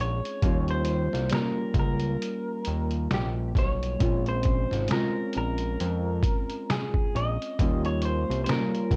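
This melancholic, nostalgic lo-fi hip hop excerpt opens with an electric guitar through a small old amp, warbly synth keys and a fat analog bass sounding together, unhurried at 67 BPM in 4/4 with a gentle swing on the sixteenths. The guitar carries the melody in a slightly broken-up, fingered tone, softened by a low-pass filter and plate reverb. Beneath it, the mellow keys supply the accompaniment, thickened with chorus, detuned square and sawtooth waves and a faint noise layer. The thick bass sits up front with a quick filter pluck and sustained notes. At 0.3 seconds a trip hop sampler-style kit enters, its pitched-down, muffled sound built from a thumpy kick, a medium-tuned snare, hi-hat and finger snaps re-recorded in a small room. The harmony moves from Eb7 to Bbm7 and back to Eb7, all wrapped in a light reverb and the soft grain of cassette tape.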